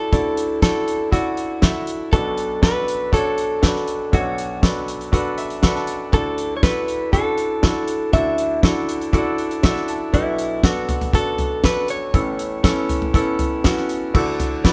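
A clean, picked electric guitar carries the melody over a clear, polished concert grand piano from the start, joined almost at once by a damped 70s drum kit with a fat snare and tight kick, set in an uplifting piano-driven pop groove at 120 BPM in D major. The piano's deep bass and present tone anchor the Dadd9, Bm7 and Aadd9 changes, and it steps forward with short fills at 5.1 and 9.4 seconds, while the compressed, direct-recorded guitar keeps a warm line until it drops out at 13.9 seconds. The dry, up-front drums and the band sit together in a moderate stone room, giving this fragment of a longer piece a live, cohesive feel.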